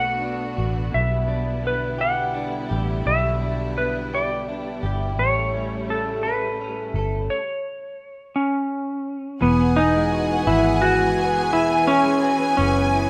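A twangy lap steel guitar, played with fingerpicks and slide, carries the melody up front in this tender, romantic pop excerpt in a straight 6/8, over a double-tracked, compressed electric guitar recorded direct, lush bowed strings holding sustained chords, and a dark, round, foam-muted electric bass. After a stop at 7.3 s, the music settles onto a new chord at 9.4 s, where an intimate violin section, played sul tasto with light vibrato, adds a high second line. The rough demo-style mix sits in light studio reverb.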